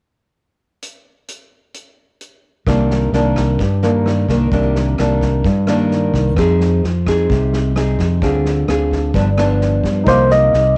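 A home cassette recording with light reverb frames this intimate, melancholic bossa nova fragment in C minor at 130 BPM: a natural, big-room drum kit with punchy kick, rim click and hi-hat opens at 0.8 s, a fingerpicked nylon-string guitar with finger squeak and a bright, growly, amped fingered electric bass join at 2.7 s over Cm9, Fm7, Dm7b5 and G7, a present baby grand piano enters at 10.0 s, and a clean, up-front tine electric piano melody follows on Cm11 at 10.1 s just before the cut.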